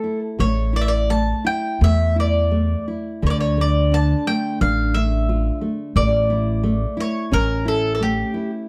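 A rubato 4/4 pulse around 87 BPM carries this passionate, longing fado-style ballad fragment. A woody, double-strung picked mandolin sings the melody up front through plate reverb, a deep classical nylon-string guitar fingerpicks the accompaniment beneath it, and a growly, thumpy pizzicato upright bass on steel strings joins at 0.4 s, all in a dark, warm production with light reverb as the chords move from A5 through Dsus2 and Asus4 to A.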